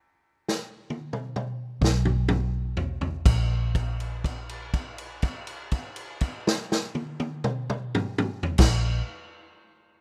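Soulful and laid-back, this short slow-blues excerpt in a straight 12/8 opens on a stop before a vintage drum kit, with dark cymbals, a punchy kick and a rolled-off top sitting up front, plays a fill as the tempo slows, then a dark, round, foam-muted fingered electric bass enters at 1.8 seconds and settles into a long held low note from 3.2 seconds, all captured dry in a rough home-demo mix.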